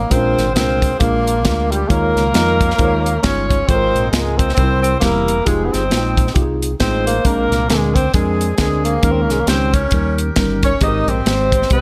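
A reverberant studio sound frames this hopeful, soulful uptempo gospel excerpt at 135 BPM with a swung 4/4 feel, where a breathy, close-miked tenor saxophone carries the melody in a whispered, intimate tone alongside a smooth jazz-style saxophone section with light vibrato, while a worn, slightly out-of-tune tine electric piano accompanies on chords moving from Bb7 to Abmaj9, a round, punchy fingered electric bass holds the low end, and a dry, polished, tight funk drum kit with hi-hat, kick and snare sits up front from 0.1 seconds.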